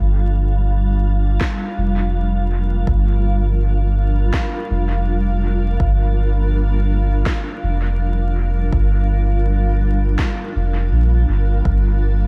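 Swung sixteenths at 82 BPM in 4/4 give this hazy, deep ambient dub passage in G minor its loose, unhurried sway, cut from a longer piece and resting on a Gm7 chord until a move to Bb at 11.7 seconds. A soft dub sub bass sits up front from the start, round and sustained with a fast attack and a touch of tube saturation, its triangle and square wave tones deep beneath everything. Around it drifts a granular cloud pad holding sustained chords, blurred and evolving with detuned unison sine voices, a slow attack, long release and its own built-in reverb, sitting well back in the mix. An electronic kick drum enters at 1.4 seconds, layered and tape-toned with a small-room character, alongside a faint, woody electronic snare that carries dub echo and a large-room feel. The snare drops out at 10.4 seconds while the kick continues a little longer, and a noticeable vinyl crackle runs across the fairly dry recording, adding a dusty surface to the haze.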